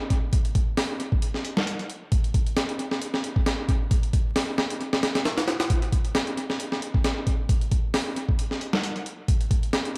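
A sampler-style breakbeat kit sits up front, compressed and pitched up, with a thumpy kick, a high-tuned snare and hi-hat that sound re-recorded in a large room and trail analog delay. It enters at 0.1 s and plays through to 10.0 s at 134 BPM in 4/4, with a light swing on the 16ths. Cut from a longer piece, this gritty, raw passage has light reverb, an echo-heavy mix and a bed of vinyl crackle.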